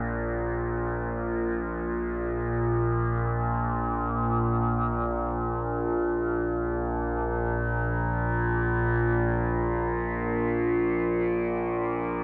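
Unfolding in free time, this ominous, cavernous ambient excerpt features a lone overtone-sweeping drone, a wave-folded blend of sawtooth and sine with moving, resonant overtones, slow attack and long release, sitting up front between Bb1 and Bb2 with chorus, phaser, delay and its own reverb, shifting into a new section at 3.3 seconds and bathed in a 7.0-second cathedral reverb and the warbly pitch drift of worn cassette tape.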